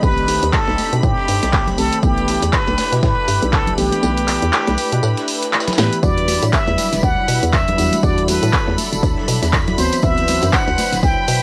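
This short piece, cut from a longer track, has the lo-fi feel of a home cassette recording in a light reverb. It is a smooth, warm deep house groove in E minor at 120 BPM, with a swung sixteenth-note feel. Up front, a forceful, brilliant jazz-style trumpet with a plunger mute carries the solo melody, with wah-wah, vibrato and analog delay. Behind it, a detuned sawtooth analog pad with chorus and tremolo sustains chords, and a round, dark FM electric piano plays stabs. A hollow, bouncy FM bass anchors the low end while a shimmering vintage string machine sits in the background, and the pad, electric piano, bass and strings pump against the beat. The drums layer a punchy, tape-warm electronic kick, an analog drum machine with claps, hats and a punchy snare, a gritty, compressed sampler-style kit with a fat snare, and close, dry congas. The kick drops out from 4.0 to 6.0 seconds, a drum fill leads back in, and a jingly tambourine joins at 6.0 seconds as the harmony moves from B7b9b13 and G69/B to Em9 and D13.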